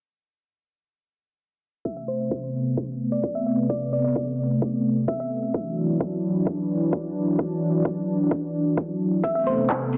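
A lush, thick unison pad built from detuned sawtooth and square waves carries this euphoric, emotional slice of festival progressive house, holding sustained chords with a slow attack and long release, its bright tone treated with chorus, sidechain pumping and a filter sweep across the whole passage. The harmony moves from Amadd9 to Dadd9 and back to Amadd9. From 1.9 seconds a round, tine-like synth pluck with a thumb-piano character plays a gentle melody, its warbling, vintage FM voice carrying a noise layer, a fast decaying attack and a dark edge, dressed in chorus and tape echo. A punchy, layered electronic kick runs beneath from the same point, thinned by a high-pass filter. Near 9.5 seconds a big-room dance kit arrives up front with handclaps and hi-hat. The whole mix sits in a moderate hall reverb under a low-pass filter, and the clip is cut from a longer piece.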